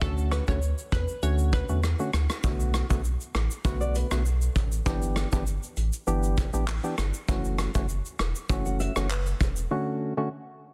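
A straight 4/4 brush kit with handclaps, rim click, hi-hat, shaker and a tight, softly clipped kick drives this sultry, tough dancehall excerpt at 99 BPM in B minor, where a deep, round sub bass and hollow, dark organ stabs with chorus carry the chords, a crystalline wavetable pluck with tape echo glints only until 1.6 s, an egg shaker rings in the background from 2.4 s, and a thumb-plucked nylon-string guitar adds arpeggios from 3.6 s and again just before the closing break, all within a small room and a dense, heavily limited master.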